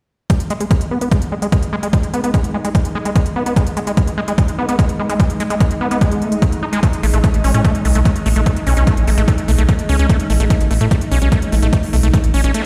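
A punchy, overdriven electronic kick drives a straight 4/4 pulse at 147 BPM from 0.3 seconds, alongside crisp, overdriven electronic hi-hats, in this driving, psychedelic trance passage cut from a longer piece in G# phrygian. A squelchy, gritty acid bass riff runs throughout, distorted and resonant, with a filter sweep across its length, dub echo trailing its notes and sidechain pumping shaping its pulse. An evolving wavetable pad with a slow attack enters at 1.0 seconds, holding morphing, detuned chords under chorus and built-in reverb, and it too pumps against the kick. At 7.0 seconds a round, deep analog bass arrives up front in the low register, as the harmony moves from a G#5 chord to Amaj9#11. A brief electronic reverse cymbal at 12.6 seconds closes the passage, and the whole mix carries a light digital ambience with the stony reverb of a bare room heard through a big sound system.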